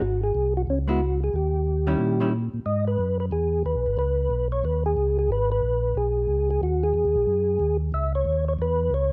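This soul jazz organ trio excerpt opens with two tonewheel organs sounding together, setting a soulful, late-night mood at a brisk 182 BPM in 4/4 with a swung eighth-note feel in G# minor, tuned slightly flat to A4 = 436 Hz. The melody comes from a soft, flute-like organ voice with a clean, percussive second-harmonic attack, colored by chorus vibrato and a slow rotary speaker. Beneath it, a second tonewheel organ carries the bass line in a round, dark register, lightly overdriven and also treated with chorus vibrato and slow rotary. A hollow-body electric jazz guitar appears briefly from 0.9 to 2.3 seconds, adding picked, clean accompaniment. The harmony moves through seventh chords such as G#7, C#m7 and D#7b9 before settling around G#m7 and C#m7 as the phrase repeats from 2.7 seconds. All three instruments sit up front in a dusky production with light reverb.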